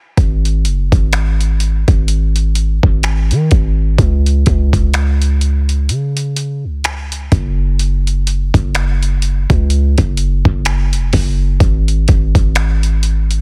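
Dreamy and tender, this short cut from a longer contemporary R&B piece moves at a slow 63 BPM in 4/4 with a swung sixteenth-note feel, tuned slightly sharp of standard pitch. A deep, boomy 808-style bass with a sine core, a layer of noise, a fast attack and a decaying sound sits up front alongside a gritty, overdriven sampler-style drum kit of finger snaps, hi-hat and thumpy kick, both playing from 0.2 to 13.4 seconds. The sound is dry and heavily compressed like a radio broadcast, with a brief new section arriving at 11.6 seconds.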